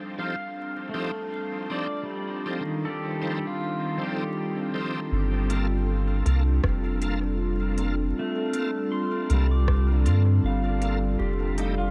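Ambient dub excerpt at 79 BPM in 4/4 with a loose sixteenth-note swing, spacious and meditative, set over a bed of vinyl crackle and light digital ambience. A warbling, lo-fi pad holds dark, detuned sustained chords from the start, moving from F9 to Gm7 at 5.1 seconds and back to F9 near the end, while a filter sweep runs over both the pad and a clean, fingerpicked pedal steel guitar whose slide arpeggios drift through tape echo. A bright, shouting tonewheel organ adds chorused stabs through a slow rotary speaker, roughened by vintage 12-bit sampler grit and trailed by dub echo. At 5.1 seconds a deep, round sub bass arrives up front, soon joined by crisp, filtered hi-hats and rim clicks sent into dub echo. A muffled, thumpy kick sits in the background between 6.6 and 9.8 seconds, giving the groove a soft, roomy pulse.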